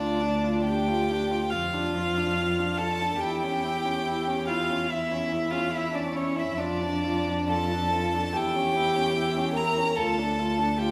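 An up-front first violin carries the melody with light vibrato and an airy, sul tasto bow, its tone warm and intimate, in this elegiac, solemn fragment of a slow romantic movement for string quartet, played with rubato. A dark second violin traces a second line beneath it, while a nasal, woody viola fills in the accompaniment and a close cello with a soft attack anchors the bass. The four bowed players sound together for the full 10.9 seconds, wrapped in the wet reverb of a recital hall.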